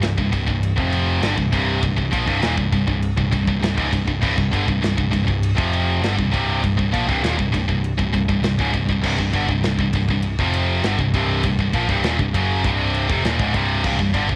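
Heavy metal in C minor at 100 BPM in a straight 4/4, this dark, heavy passage is cut from a longer piece and opens on a C5 power chord. Two high-gain distorted guitars drive the riff from the very start to 14.4 seconds: one bright and up front, the other tucked into the background, both carrying a cassette-tape grain. Beneath them, an overdriven picked electric bass adds a growly, punchy low end. An acoustic drum kit with a tight kick, a medium-tuned snare, ride and crash cymbals plays in a small room and shares that tape coloring. The whole take has the close, small-room ambience of a home recording on cassette, tuned slightly sharp to A4 = 443 Hz.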